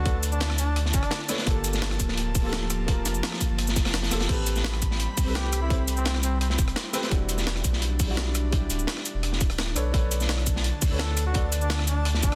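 A bucket-muted trumpet with veiled, scooped notes opens this melancholic, rolling liquid drum and bass excerpt at 170 BPM, over a dark baby grand piano with audible action noise and delay, an airy, breathy pad with chorus and sidechain pumping, and a round sine sub bass. From 0.1 seconds, a tight, up-front electronic kick joins a gritty, pitched-up jungle sampler kit with cabasa, crash, rim click and a soft-clipped snare, plus a saturated breakbeat kit with high-passed hats and snare. The dub-echoed trumpet returns in short phrases at 5.4 and 11.0 seconds as the harmony moves through Bm9, Gm9, Am9 and Em9 in a dense, heavily limited mix.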